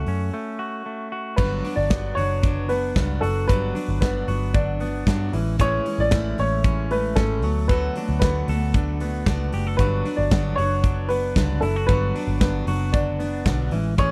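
A dark, woody upright piano melody, a twangy clean electric guitar arpeggio with tape echo and a round, foam-muted vintage bass open this nostalgic jangly indie pop piece at 114 BPM, with the punchy, up-front rock drum kit joining at 0.1 seconds and a break running to 1.4 seconds, when a full-bodied jumbo steel-string acoustic guitar enters with picked accompaniment as the chords drift from F#m through Gmaj7, Amaj7 and D6 in a dry, close 1970s-style studio sound.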